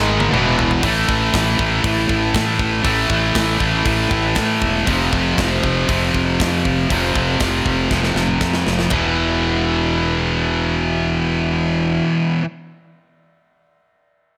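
A bright, overdriven electric guitar sits up front with a high-gain partner, both driving dark, aggressive heavy metal riffs in a straight 4/4, with power chords shifting through E5, A5 and F5. A double-tracked distorted guitar lurks in the background only until 0.8 s, while a round, fuzz-laden fingered bass growls underneath. A tight, big-room drum kit with a tight kick, medium-tuned snare, hi-hat, ride and toms opens with a fill, throws in another around 7.9 s, and drops out as this short cut from a longer piece moves into its closing section, all under light studio reverb.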